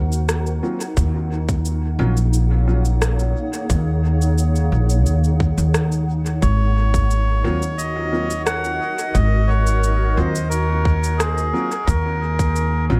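A woody, pizzicato upright bass sits up front throughout this spacious, deep ambient dub excerpt at 88 BPM in Eb dorian, anchoring harmony that opens on a rootless Ab13 before moving from Ebm7 to Ab7sus2 and back. Beneath it, a granular cloud pad holds sustained chords with a slow attack and long release, its blurred, evolving, mellow texture bathed in its own reverb. A tight, overdriven electronic kick and an overdriven electronic cabasa and rim click carry the beat, both sounding re-recorded in a large room, with dub echo trailing the cabasa and rim. A polished upright piano drops echoing stabs early on and returns from 7.4 seconds, while a reedy, breathy melodica with a nasal, boxy character enters up front at 6.4 seconds to carry the melody. The mix is soaked in echo, giving the fragment a cavernous sense of space.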